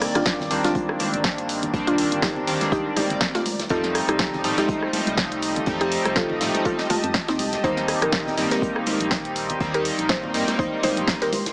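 Late-night and moody, this deep house excerpt moves at 122 BPM in 4/4 with a light 16th-note swing, cut from a longer piece and built over Cm9, F9 and Eb6 chords. Up front, a glossy, retro chorused polysynth plays stabs with pulse-width modulation and a filter sweep, its tape echo and cassette tape colour pumping against the sidechain. A woody, round mallet-like synth pluck carries the melody with chorus and tape echo, while a hollow, organ-like FM bass sits dark and decaying in the background, also pumping. The beat centres on a punchy analog drum machine with a tape-warm snare, hi-hat and rim click, joined very quietly by an airy unplugged drum kit played with bundle sticks, and an overdriven, deep electronic kick enters at 0.3 seconds. Congas join at 0.4 seconds from a live room far back, and a cloudy, blurred granular pad drifts underneath, all set in light reverb with a small speaker sound.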